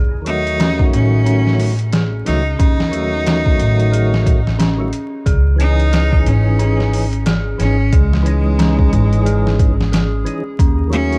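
A swung 90 BPM trip hop groove in 4/4 drives this smoky, dark fragment in C# minor, built on a compressed, pitched-down sampler-style drum kit with a thumpy kick, medium-tuned snare and hi-hat, overdriven and up front with studio reverb. A woody pizzicato upright bass sits just as far forward, thickened by tube saturation, while a fat, lightly overdriven tonewheel organ with percussive third-harmonic attack, vibrato, tremolo and a slow rotary speaker fills in the accompaniment. From 0.3 seconds a clear, focused bowed cello carries the melody with vibrato and tape echo, while from the very start an eerie, inharmonic FM bell, detuned and quiet, traces arpeggios through chorus, 12-bit sampler grit and tape echo. At 6.4 seconds a warbling, nostalgic lo-fi pad with a slow attack and long release enters in the background, washed in chorus and its own reverb. The harmony moves from D#dim to C#madd9 and back, and the overall production is dry and dark, dusted with vinyl crackle, cut from a longer piece.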